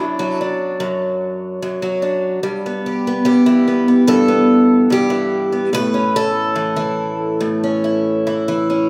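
A picked twelve-string acoustic guitar, shimmering and octave-doubled with an audible finger squeak, carries this intimate, reflective folk excerpt alone at a rubato 73 BPM in E dorian, moving through Dadd9/F#, Em/G and A up front in a recital hall's moderate reverb across its 8.9 seconds.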